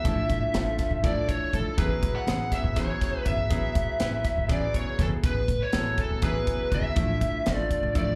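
Heard through a venue's PA with club reverb and a small room's light ambience, this short fusion passage sounds like a live gig. It is funky and bright electric jazz fusion in A major, pulsing at 243 eighth-note beats per minute in a 7/8 metre with a straight feel. Up front, a lead guitar through a small cranked amp carries the melody with an overdriven, picked tone and slapback echo. Behind it, a brilliant concert grand piano with deep bass and long sustain supplies accompaniment, and a mellow, clean electric guitar, fingered and set in the background, adds dark stabs coloured by lush chorus and the same slapback echo. A woody, thumpy upright bass with gut strings plays pizzicato, and an airy, polished drum kit drives the groove with a high-tuned snare, punchy kick and hi-hat. The harmony moves from Dmadd9/A to C#m7/A, settles on Amaj9 at 3.5 seconds, and returns to Dmadd9/A before the cut at 8.2 seconds.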